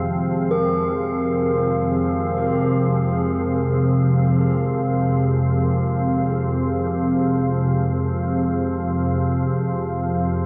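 Set in a vast, echoing space, this recording is drenched in a wet cathedral reverb with a long 6.8-second decay, giving it an ominous, boundless atmosphere. It is a dark ambient drone in free time, resting on an F minor chord throughout this fragment taken from a longer piece. Up front, a calm organ-like drone holds the low register with detuned unison voices, a slow attack and long release, thickened by ensemble chorus. Above it, a deep, moody pad sustains chords with a warbling, vintage character, its detuned sawtooth tone and sub octave softened by chorus. A bronze singing bowl, struck with a wooden striker, plays meditative arpeggios with a metallic ring and slow beating, trailing tape echo until it drops out at 8.0 seconds while the drone and pad carry on to the end at 10.5 seconds.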